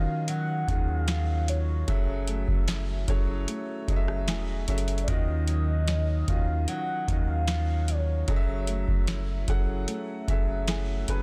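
Opening at once on a mellow, horn-like synth lead with chorus and tape echo that carries the melody until 8.7 s, an open, long-sustaining baby grand piano, a small, boxy fingerpicked nylon-string guitar with tape echo sitting in the background, and a round, sine-toned 808-style bass up front, this sensual, late-night contemporary R&B excerpt at 75 BPM in 4/4 drifts between Ebm9 and Gbm9 as a booming analog drum machine with a deep kick, crisp snare, metallic hats and rim click joins at 0.3 s, set in digital ambience with a dense, heavily limited modern master.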